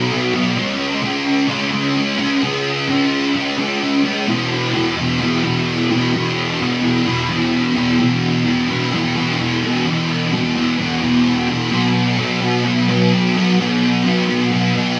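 A thick, fuzz-drenched electric guitar sits up front in a lush hall reverb, its double-tracked, distorted tone thickened further by an ensemble chorus. This blissful, hazy rock excerpt features the picked guitar alone for its full 15 seconds, ranging from low E2 up to C#4 over straight power chords. The passage opens on B5 and C#5 before settling onto E5 at 4.3 seconds, returning to B5 at 11.7 seconds.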